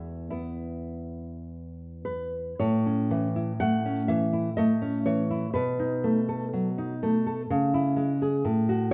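A thumb-plucked nylon-string guitar anchors this romantic, lyrical classical duo: its up-front accompaniment spans E2 to F#5 and moves through E, A, B7 and C#m in a slow, rubato 3/4 at 51-65 BPM, tuned to A4 = 444 Hz. A second nylon-string guitar, fingerpicked and very quiet, touches a melody on E4 only until 2.1 s, after which the accompanying guitar carries the passage alone to 8.9 s. Both sit in a moderate recital-hall reverb that lends a warm glow to this short cut from a longer piece.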